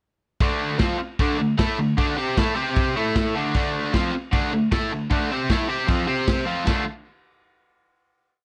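Garage rock in D minor at 153 BPM in 4/4, this short, gritty and swaggering piece kicks off at 0.4 seconds with a crunchy, bright, double-tracked electric guitar playing a picked power-chord riff up front, over a small-room acoustic kit laying down a garage stomp groove. The drums bring a punchy kick, a medium-tuned snare and dark crash and ride cymbals with a rolled-off top. Moderate studio reverb and a cassette-tape sound color the mix before the riff resolves onto a final D minor chord at 6.7 seconds.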